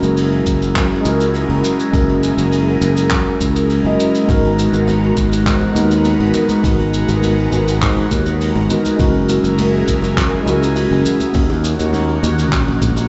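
Sunset chillout at 102 BPM in G# minor, this relaxed, warm-hearted excerpt moves through F#9, G#m9 and D#m7 chords over a straight 4/4. A mellow, clean tine electric piano carries the accompaniment with a touch of delay until 11.4 seconds, while an airy, breathy pad with a detuned, slow-attack character holds sustained chords beneath, colored by chorus and phaser. Up front, a growly, bright fretless electric bass sustains the low end, joined at 0.5 seconds by a deep, layered electronic kick. A jazz brush kit sits softly in the mix with handclaps, hi-hat and shaker, its top rolled off, and very quiet, close bongos and congas enter at 4.6 seconds. The whole is bathed in a lush hall reverb, and the sound is dark overall, carrying the feel of a big sound system playing in a bare room.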